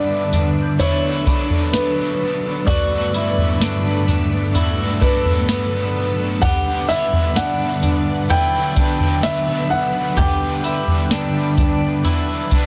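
This dream pop excerpt opens on a Gmaj7 chord, with a felt-muted upright piano carrying the melody between B4 and G5, its thick-felt tone dark and intimate, touched by audible action noise and set in digital delay and shimmer reverb. A very quiet, bell-like celesta adds a delicate, airy sparkle high above for the first 2.5 seconds, while a vintage string machine holds lush, full sustained chords with a slow attack, sawtooth edge and sub octave, thickened by ensemble chorus. Beneath it, a cranked stack guitar plays bright, overdriven accompaniment colored by harmonic tremolo and subtle chorus, and a clean electric guitar picks dark arpeggios swimming in lush chorus and digital delay. At 0.3 seconds a soft vintage rhythm box comes in up front at a slow 64 BPM in straight 4/4, its dry, tape-warm analog kit of deep kick, crisp snare, tambourine and toms sitting clearly over the haze. The mood is dreamy and ethereal, held in G major on a single chord, with a huge ambient reverb around the whole mix and a dense, heavily limited modern master.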